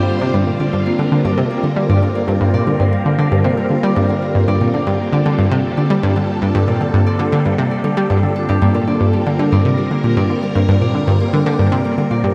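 Ambient, sequencer-driven space music in G minor at 116 BPM in a straight 4/4, this mysterious, hypnotic passage is cut from a longer piece and sits on a single G minor chord for its full 12.3 seconds. Up front, an analog pluck plays a riff in the low register, its round sawtooth tone given a fast attack and a decaying filter pluck, colored by chorus, cassette tape and tape echo. Around it, a Celtic harp rings out fingerpicked arpeggios, acoustic and warm, its notes trailed by tape echo. Alongside them, a phased string machine holds sustained chords with a slow attack, its bright, vintage sawtooth sound swirling and evolving through ensemble chorus and phaser. All three parts play throughout, set in a moderate plate reverb of 2.8 seconds within an echo-heavy mix.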